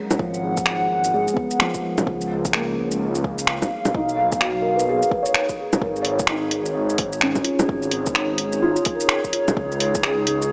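Swung 16ths at 128 BPM in 4/4 drive this ghostly, wistful future garage excerpt in G# dorian, where an up-front, overdriven deep house kit of bongos, finger snaps, hi-hat and shaker joins at 0.1 s and a deep, layered electronic kick arrives at 0.2 s alongside a menacing detuned saw bass with a filter swell, set against a soft felt-muted upright piano with analog delay and a warbling, nostalgic tape-like pad with chorus, while sidechain pumping breathes through piano, pad and bass over G#m7, C#, B and G#m chords in a lush hall reverb heard through a small speaker.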